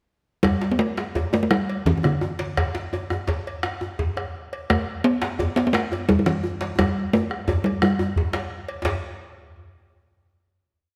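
A close, dry talking drum sits up front, carrying a motif-based melody of short-ringing call phrases in G major pentatonic until it stops at 8.5 seconds. This complete West African traditional drum ensemble piece is powerful and earthy, moving in a straight 12/8 at 115 BPM counted in dotted quarters and speeding up throughout. Beneath the talking drum, a round bombo plays an evenly spread pattern. One djembe, medium-tuned with metal rattles, plays lead drum phrases. A second djembe, tight and cracking, keeps an evenly spread pattern in the background, and both djembes have a vintage, band-limited character. A metallic cowbell rings a bell pattern in the background, and a drum fill from 6.8 seconds leads into a final hit at 8.8 seconds, all set in a wet concert hall reverb.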